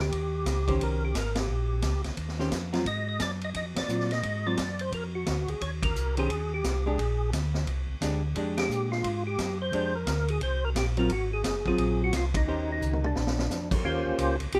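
Greasy and bluesy, this swinging soul jazz organ trio excerpt puts a fat, percussive tonewheel organ on the melody, its key click and chorus vibrato turning through a slow rotary speaker, while a second, round and dark organ carries the bass up front. A vintage acoustic drum kit with dark cymbals, a punchy kick and a rolled-off top joins at 0.1 seconds, and a clean, picked hollow-body archtop guitar comps from 0.7 seconds. Band accents punctuate the rich extended chords, and a drum fill at 12.8 seconds leads back toward the Eb13, all in a light reverb.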